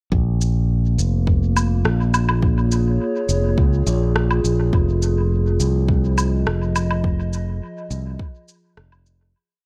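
Hazy and deep, this short ambient dub piece moves at 104 BPM in Bb minor, shifting from Bbm7 to Fm7 at 4.7 seconds. A bright, up-front fingered electric bass carries a dub-style line under a soft, tape-warm electronic kick and a sparse, echoing beat of electronic shaker, low woodblock and rim click, both drum parts set in small room ambience. From 1.0 seconds a warbling, detuned, lo-fi pad with a slow attack and long release sustains mellow chords through chorus and reverb before the whole groove fades out from 6.3 seconds.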